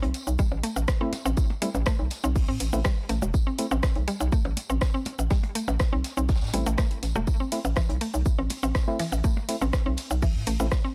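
A hollow, knocking FM bass bounces up front with sidechain pumping beneath a punchy layered kick in this quirky, cool minimal techno excerpt at 122 BPM in A minor, where a woody, mallet-like synth pluck riff with chorus and analog delay meets a dark organ stab entering at 1.0 seconds with cassette tape grit, while a house drum kit of hi-hat, ride, rim click and shaker, a high-passed compact cocktail kit with a high-tuned snare and tambourine, and delayed percussion blips fill out a dry, gritty hardware sound.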